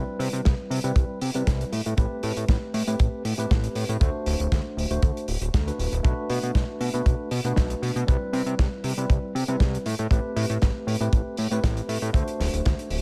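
A tine electric piano and a fat analog bass open together at 0.0 seconds in this sleek, groovy nu-disco excerpt, moving at 118 BPM in a straight 4/4 feel in A dorian. The electric piano sits back in the mix with a clean tone, its chords pumping from sidechain compression and trailing tape echo through a progression of Cmaj7, Am9, D7 and Bm7. Up front, the bass is thick and nasal, a saturated blend of sawtooth and square waves with a fast attack, sustained notes and an evolving character. A damped 70s drum kit brings in hi-hat and a medium-tuned snare at 0.2 seconds, dry and acoustic with a rolled-off top, followed at 0.5 seconds by a tight, forward kick drum. Studio reverb on the drums gives the echo-heavy mix a sense of space while the groove stays sleek.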